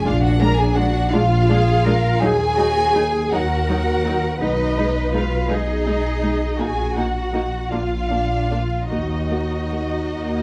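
Classical music for symphony orchestra, a slow romantic movement in E-flat minor in a rubato 12/8 at around 49-56 BPM, melancholic and yearning, cut from a longer piece. A distant, lush violin section carries the melody high above a softer-edged second violin line, while violas add accompaniment with vibrato and portamento, focused cellos sing close to the microphones, and an up-front double bass section holds a smooth, even foundation. The strings sit in a moderate recital-hall reverb, captured in close detail with vinyl crackle, moving through chords from Bb7 to Ebm and resolving on Ebm at 8.9 seconds.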